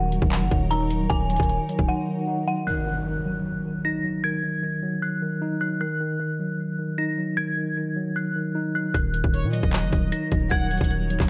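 A dark, lightly reverberant trap cut from a longer piece, menacing and hard-hitting at 153 BPM in a half-time Eb minor feel, opens with an eerie, inharmonic FM synth bell melody over a mellow tine electric piano, a cloudy granular pad and a saturated, distorted 808 bass beneath a tape-warm kit of hard-clipped kick, metallic hi-hats and handclaps; the bass and drums break off at 1.9 seconds, an electronic impact lands at 2.7 seconds, both return at 8.9 seconds, and at 9.3 seconds a biting, nasal chamber violin section adds a brief delayed second line.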